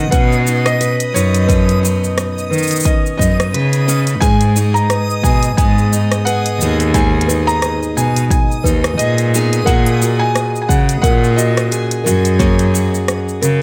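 Folktronica in B major at 88 BPM with a gentle swing, this warm, pastoral excerpt pairs a muted, felt-soft upright piano melody and a bell-like celesta line, both touched by tape echo, with picked steel-string acoustic guitar arpeggios, an intimate bowed cello bass up front, a dreamy reversed granular texture in the background, and overdriven electronic drums where a deep kick and smooth hats, cabasa and rim clicks enter at 0.1 seconds, all moving through Badd9, G#m and F#add9.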